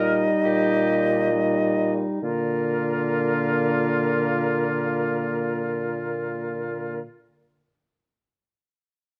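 A rubato wind quintet opens together in a lyrical, slow romantic classical fragment at 34 BPM in Bb major, where an airy, expressive concert flute sings the melody with vibrato and a soft attack over a distant oboe second line, a smooth-topped clarinet and a mellow French horn in accompaniment, and an up-front bassoon holding Bb2 in the bass, easing to a slower pace through the first 2.2 seconds as the harmony settles from Eb/Bb onto Bb, all bathed in a moderate large-studio reverb with a dark, warm production.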